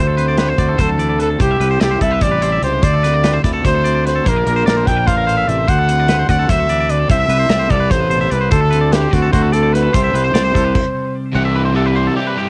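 Bright and intricate, this fragment of a longer math rock and midwest emo piece moves in an odd 7/8 metre with a straight feel and a home-recorded cassette character, kept dry and close. A clear, close-miked trumpet carries the pop-style melody up front with light vibrato, while a compressed twelve-string electric guitar with a vibrato effect picks out the accompaniment from the background and a twangy electric guitar picks sparkling arpeggios through tape echo. Underneath, a round, punchy fingered bass with fuzz and overdrive sits prominently, and an acoustic drum kit with a dark, rolled-off top, tight kick and medium-tuned snare drives the pulse with hi-hat and crash. The harmony circles around D7, Cadd9 and Bbmaj7 before settling on Cmaj7. After a stop at 10.7 seconds, the trumpet drops out at 11.2 seconds and a crunchy, double-tracked overdriven guitar riff enters for the closing moments.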